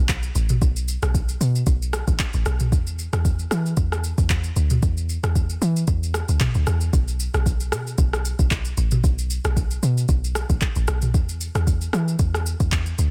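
Soulful and deep, this short amapiano excerpt, cut from a longer piece, sits in a groove with a gentle 16th-note swing. A deep log drum bass carries the low end from the very start, its round, percussive tone built on FM sound with a noise layer, giving each note a fast attack that decays into a mellow body. A smooth R&B drum kit joins at 0.1 seconds with handclaps, a soft kick, rim clicks, shaker and toms, its electronic, produced character re-recorded in a small room, with soft clipping on the snare. Both parts sit up front in a dry mix carrying little reverb. The dense, heavily limited modern master keeps the whole passage close and full through to 13.1 seconds.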